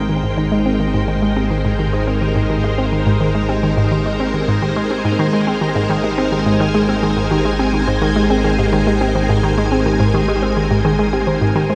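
Cosmic and expansive, this ambient, sequencer-driven space music moves at 106 BPM in a straight 4/4, resting on a single Abmaj7 chord in Ab major. Up front, a lush, vintage string machine holds sustained full-ensemble chords with a sawtooth body and a sub octave, thickened by ensemble chorus. Beneath it, a hollow, bouncy square-wave pluck plays a detuned riff in the low register, colored by chorus, phaser and tape echo. A round, tine-like thumb-piano-like synth pluck sits dark in the background, its arpeggios fading in across the whole passage, trailed by chorus and tape echo. An evolving, nasal analog drone anchors the bass on Ab1 with pulse-width modulation and a moving notch. A moderate shimmer reverb with a 7.4-second tail surrounds the sound, and this 11.8-second excerpt is cut from a longer piece.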